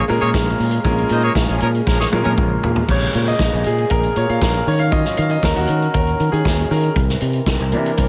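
Disco with a driving, glamorous mood, cut from a longer piece: a clear, smooth concert grand piano with deep bass carries the accompaniment over growly, punchy fingered electric bass and a punchy vintage drum kit with dark cymbals and gated reverb, while a warm French horn section holds sustained chords in the background. A clear horn section fires vintage pop-style stabs with light vibrato until 2.3 seconds, and a drum fill at 1.9 seconds leads into a grand piano solo from 2.9 seconds to the end. The chords move from Bbm7 to Ebm7 and then C7, in a small room with light reverb.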